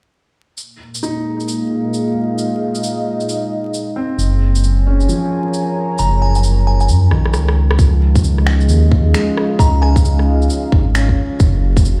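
A moody, chorused analog pad pumping against the sidechain opens this wistful, ghostly future garage excerpt with swung, tape-warm electronic shaker, rim click and finger snaps, soon joined by soft felt-muted upright piano with audible action noise and analog delay, a rumbling detuned saw bass from 4.2 s, brief crystalline FM bell phrases warbling with tremolo, and, after a drum fill, a tight up-front electronic kick from 7.8 s, the whole mix heard through a big sound system in a bare stone room with vinyl crackle.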